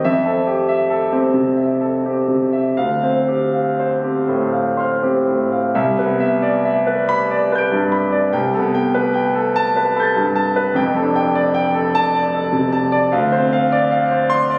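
Heard through a phone in a recital hall, this solo piano sits in a moderate wash of room reverb that lingers for about 1.5 seconds. The music is a short, hazy and dreamy excerpt of an impressionist work in C major, moving in a rubato 3/4 at somewhere between 59 and 78 BPM. The concert grand is up front, clear and natural, with deep bass and long sustain as it ranges from F1 up to D7. Extended chords drift by, opening on Fmaj9 and Dm7 before a second section begins at 5.7 seconds on Cmaj9, then moves through Am9/C and F69 and back to Dm7. The fragment, cut from a longer piece, stops at 14.6 seconds.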